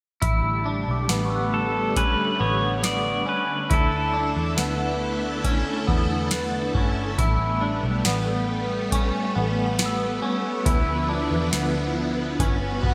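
Ethereal and dreamy, this short dream pop excerpt drifts at 69 BPM in A mixolydian, with a shimmering sawtooth string machine holding sustained chords and a twangy, scooped clean electric guitar playing arpeggios through chorus and delay, both up front. A round, foam-muted vintage bass and a booming analog drum machine with a deep kick, crisp snare, metallic hats and gated reverb anchor the sound, while a fingerpicked pedal steel guitar carries the melody with volume swells and slide from 1.5 to 6.3 seconds. A very quiet, bell-like glockenspiel played with rubber mallets adds texture, all set in a lush hall reverb with bright 1980s-style digital production as the chords move from A9sus4 through Dsus2 and Dmadd9 to Gmaj7.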